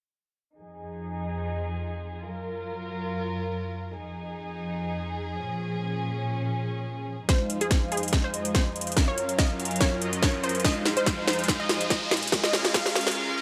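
Dreamy, lush future bass at 143 BPM in a half-time swing, where a dark, softly bowed chamber string section holds sustained pumping chords in F phrygian from 0.6 seconds under a filter sweep and moderate hall reverb, until at 7.3 seconds a fat, detuned sawtooth polysynth riff with phaser, a punchy unison pluck melody with chorus and delay, and an up-front, overdriven, hard-clipped kick with sharp snare and metallic hats crash in for a build-up, joined by a background riser at 9.2 seconds before the break.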